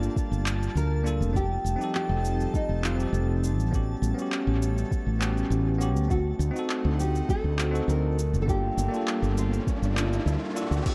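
A moderate spring reverb and heavy echo wash over this wistful, smooth sunset chillout excerpt, which moves at 101 BPM in a straight 4/4 in G minor, tuned slightly low to A4 = 436 Hz. A bell-like, clean tine electric piano carries the accompaniment through tape echo, while an airy, breathy pad with chorus holds sustained chords in the background, and a faint twinkling granular texture adds sparkling, octave-up shimmer on a single high note. Up front, a woody fretless electric bass sounds round, growly and punchy beneath a smooth R&B drum kit with cabasa, crash cymbal and handclaps, joined at 0.2 seconds by a soft electronic kick, both re-recorded in a small room. From 0.8 seconds a full-bodied, fingerpicked nylon-string guitar sings the melody through analog delay, finger squeaks audible. The harmony moves from Gm7 through F9, A13 and D7b9 before returning to Gm7 at 8.2 seconds, when an electronic riser begins building in the background.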